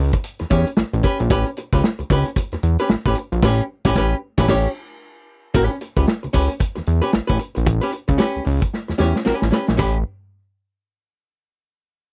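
Funk at 113 BPM in 4/4 with a 16th-note swing of 60%, this gritty, funky clip sits in A mixolydian over an A9 chord and is cut from a longer piece. A fat analog bass with a thick, detuned sawtooth tone and a filter pluck holds down the low end from the very start, its sustained notes evolving as they ring. A miked and amplified archtop guitar supplies clean, picked accompaniment in a dark, hollow-body voice, compressed and placed up front. The vintage drum kit is saturated, with a punchy kick, dark cymbals, a medium-tuned snare and a rolled-off top, moving across kick, snare, hi-hat, ride, crash and toms. The band hits a shared accent from 3.4 to 5.5 seconds, and a drum fill from 8.7 to 9.8 seconds carries the groove into its next section. The sound is dry and close, like a 1970s studio session with little reverb.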